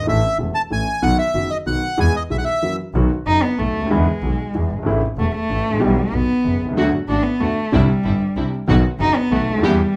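Tango at 188 BPM in 3/4 with a rubato feel, nostalgic and elegant, cut from a longer piece: a reedy, dark bandoneon sings the melody up front until 2.8 seconds over an intimate concert grand piano, whose deep bass and audible action noise sound smooth and vintage, and a clear bowed double bass with light vibrato. From 3.3 seconds a warm, nasal, boxy cello takes an expressive solo with vibrato and portamento, and at 6.8 seconds a lush, distant studio string section adds even, bowed stabs. Light reverb surrounds the parts as the chords move from A through E, F#7 and E7 before closing on D, Cadd9 and B.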